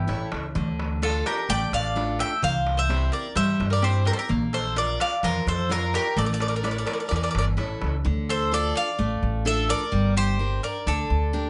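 Dramatic and intense, this short Greek folk band passage in D minor moves at 128 BPM in a straight 4/4, with a bright, metallic bouzouki carrying the melody up front over a woody mandolin second line, a picked steel-string acoustic guitar with fresh strings and finger squeak, a dark pizzicato upright bass, and a crisp, distant metal-shell darbuka in the background that drops out at 7.9 seconds, all in a moderate studio reverb as the chords move from Dm through C, Bb and A before a return to Dm and a closing turn to Gm.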